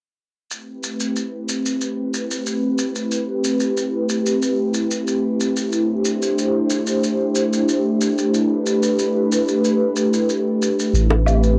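A shaker and woodblock, played with brushes in an acoustic studio room and run through cassette tape, set a straight 4/4 pulse at 92 BPM in this relaxed sunset chillout piece in A minor. Over them, an airy, breathy pad holds sustained chords from A3 to C5, blending detuned sawtooth and triangle tones with a noise layer, a moving notch, chorus and a filter sweep, all shaped by a slow attack and long release. The harmony moves from Am9 to D9sus4/A at 5.7 seconds and returns to Am9 near the close. At 10.9 seconds a round, deep analog bass enters on A1, dark and up front with tube saturation and a fast attack. Tight, high-tuned bongos struck with hard hands land close at 11.1 seconds, and the whole home cassette recording carries a short, moderate booth ambience.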